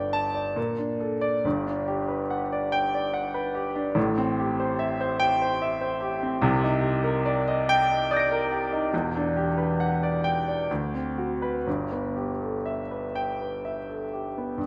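Dreamy and serene, this is a short passage of impressionist classical solo piano in G major, cut from a longer piece and moving in an unhurried 3/4 at roughly 60 to 74 BPM with a free, rubato feel. A clear grand piano carries everything alone from start to finish, ranging from E1 in the deep bass up to D7 at the top of the keyboard. Its tone is present and up front, with a long sustain that lets each harmony ring into the next. The harmony drifts through lush extended chords, opening on Gadd9 and a colourful Bbmaj7 before settling through Gmaj7, Am7, Cm9 and Em9, then resolving via D6 to G69 at 11.7 seconds. A generous, wet reverb with the character of a large scoring stage surrounds the instrument, adding a soft, spacious halo to the sound.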